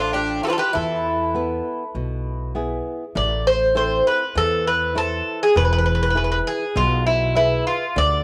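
A straight 4/4 pulse at 100 BPM carries this brooding, cool Greek folk bouzouki-band clip, cut from a longer piece and settling into A harmonic minor from 3.2 s after opening on Dm and E. A picked, up-front bouzouki with metallic double strings and some octave-doubled strings carries the melody throughout, while a brighter second bouzouki adds a line beneath it only until 2.5 s. A boxy, fingerpicked flamenco guitar with audible finger squeak accompanies, and a woody, growly pizzicato upright bass sits up front, all wrapped in moderate spring reverb and the character of a home cassette recording.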